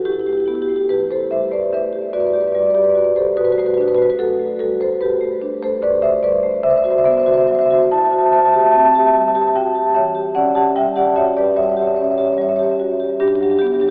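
A solo marimba played with medium mallets opens this reflective, flowing contemporary classical excerpt in E minor, drifting at a rubato 73 BPM across a range from E2 to A5. Its woody rosewood tone sounds vintage and band-limited, heard through an AM-radio filter from further back in a cathedral whose long, wet reverb lingers for 5.5 seconds. The harmony moves through rich chords such as Am9, Cmaj7#11 and D9sus4 before settling on Em6 at 9.9 seconds and Gmaj7 at 13.2 seconds.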